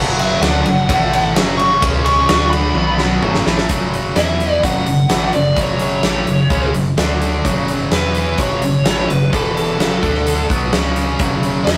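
Hard rock in F# minor at 128 BPM, aggressive and driving, this excerpt opens with a biting, overdriven lead guitar solo over three picked rhythm guitars (a bright overdriven one, a scooped high-gain one and a very quiet double-tracked distorted one) plus a round, deep analog bass with fast attack and a filter sweep. A big acoustic drum kit sits up front from 0.2 seconds, with a fat snare and tight kick, and a drum fill from 2.8 to 3.7 seconds leads out of the solo into a riff-driven section moving among F#m, E5, D5 and B5. The whole take has the rough feel of a rehearsal room, with tube saturation and a moderate stone-room reverb.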